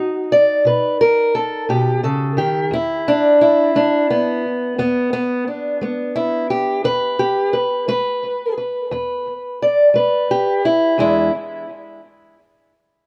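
In a straight 12/8 at 58 BPM, this soulful, rollicking acoustic country blues cut from a longer piece in E mixolydian features a solo fingerpicked steel-string parlour guitar, boxy and up front with tape echo, ranging from E2 to D5 and moving from B7 to E7 at 2.7 seconds before it stops at 11.3 seconds, all set in light reverb with a dark production.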